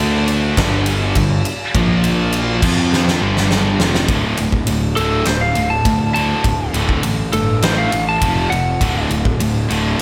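Two picked electric guitars open this swaggering, anthemic hard rock excerpt on a riff: one biting and overdriven, the other scooped and high-gain, both set back in the mix with slapback echo, while a fuzzed, overdriven picked bass sits up front beneath them. A big acoustic drum kit with a fat snare, punchy kick, crash and ride joins at 0.3 s and plays a fill at 2.9 s. From 5.0 s, a bright, twangy, slightly broken-up lead guitar with slapback echo and digital delay takes a compressed solo melody, and a lush hall reverb gives the whole excerpt a big arena sound.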